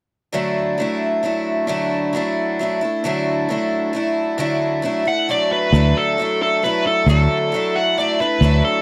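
Nostalgic and hopeful, this short rock excerpt moves at 134 BPM in a straight 3/4, opening with a picked twelve-string acoustic guitar whose shimmering, octave-doubled strings ring out over a Dadd9 chord from 0.3 seconds. A smooth, bright overdriven lead guitar takes up the melody at 5.1 seconds, and a fingered electric bass joins at 5.7 seconds with a round, punchy, foam-muted tone, the loudest part in the mix. The sound is dry and close, like a 1970s studio session, with light reverb and every part placed up front.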